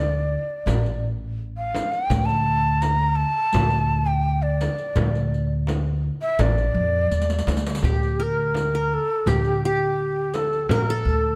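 A breathy, reedy ney with tender vibrato and softened highs carries the longing melody up front in this soulful Turkish makam ensemble piece, joined by a woody, thumpy pizzicato upright bass on gut strings. Behind them, a crisp metal-shell darbuka, a deep, distant frame drum and a vintage-sounding riq with bright jingles keep a straight pulse, and a drum fill at 7.1 seconds leads into a new section. At 7.8 seconds a fingerpicked qanun adds a bright-edged second line, all captured with close, detailed microphones and light reverb.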